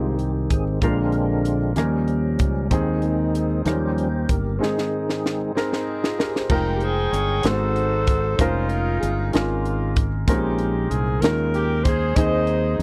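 Soulful and hopeful, this slow gospel passage in 6/8 at 64 BPM opens with a fat, clicking tonewheel organ taking the lead through a slow rotary speaker, over an intimate grand piano with audible action noise, a dark, round fingered bass and a crisp drum kit with a high-tuned snare and punchy kick, all captured close and dry in a 1970s-style studio. The organ drops out at 5.5 seconds during a drum fill, and a mellow, distant saxophone section takes up the melody at 5.6 seconds, joined at 6.8 seconds by a breathy, smooth-topped alto saxophone with light vibrato. Rich chords such as Fm11, Db69/F and Eb9sus4 colour the second half before it settles back on Ab.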